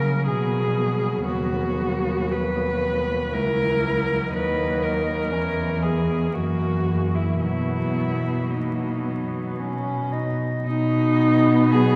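Classical and lyrical, this serene, tender passage for cello ensemble moves in 3/4 with uneven, rubato pacing, cut from a longer piece. Four bowed, con sordino cellos sound throughout: a veiled, up-front melody with vibrato and a smooth top, a distant second line and a dusky accompaniment gliding with portamento, and a soft-attacked bass beneath. A long, wet cathedral reverb and vinyl crackle set it in a resonant church or concert hall.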